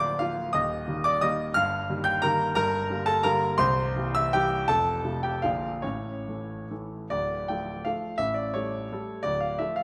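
Classical romantic piano music: a capricious, nostalgic triple-time dance in D minor, in 3/4, with dotted rhythms and a rubato feel that lets the tempo drift between 133 and 189 BPM. A solo grand piano, warm, present and up front, carries the whole passage across a broad range from C1 to G6, tuned slightly low with A4 at 437 Hz. The opening phrase moves through Bb over D, Eb, Gm, C7 and F before reaching Bb and an A chord. At 7.1 seconds a new section turns to D minor, leaning on A7 before settling back on D minor at 9.2 seconds. A moderate reverb with a 1.6-second decay gives the sound the open air of a church or concert hall, and the brief passage is cut from a longer piece.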